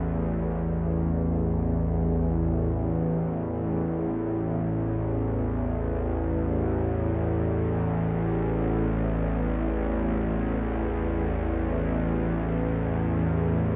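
Dark, unsettling ambient music in free time, cut from a longer piece, built on a single bowed-like drone that plays solo throughout the 13.8 seconds, holding an A5 chord low in the range of A1 to E2. The drone is string-like and tense, with a bright, sawtooth edge, detuned unison voices, a noise layer and vibrato. It sits up front with a slow attack, long release and its own reverb and delay. The whole recording is drenched in huge ambient reverb and worn cassette-tape character, its warbly pitch drift adding to the unease.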